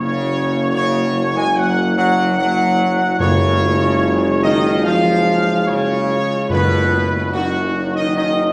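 Heard from further back in a reverberant recital hall, this regal, triumphant classical brass passage at 72 BPM in F# major features a dark, lightly vibrato trumpet section carrying the melody up front over soft-attacked French horn chords in the background, smooth, tight trombone harmonies and a warm, roomy tuba holding a low F#, with timpani on medium mallets entering at 3.2 s as the harmony moves from F# to C# over F# and then to B over F#.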